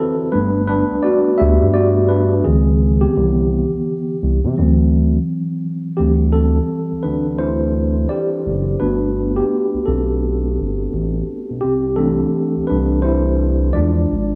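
A relaxed 4/4 pulse at 85 BPM carries a lazy sixteenth-note swing through this soulful, smooth R&B excerpt in G major, cut from a longer piece. A mellow tine electric piano opens alone at 0.0 seconds and takes the lead across both halves, its clean, warm tone sitting up front as it moves through lush chords such as Gmaj7, Cmaj9, D9sus4 and E7b9. A dark synth bass joins at 0.3 seconds, blending sawtooth and square waves with a fast attack and sustained notes that glide between pitches by portamento, also placed close and forward. The harmony shifts at 6.0 seconds into a second section built on D9sus4, Gmaj9 and C6, keeping the mood unhurried and velvety. Light digital reverb lends a small-room ambience that keeps the sound intimate.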